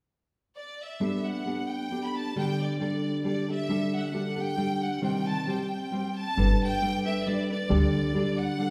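Mariachi-flavored Mexican folk in a swung triple metre, festive and proud, cut from a longer piece. A bright, lush violin section carries the melody with intense vibrato from 0.6 s, and a full-bodied, fingerpicked nylon-string guitar sits up front from 1.0 s, moving through chords like Gadd9, Dsus4 and a darker Cm. A woody, thumpy pizzicato upright bass joins at 6.4 s, all set in the reverberant air of a church or concert hall.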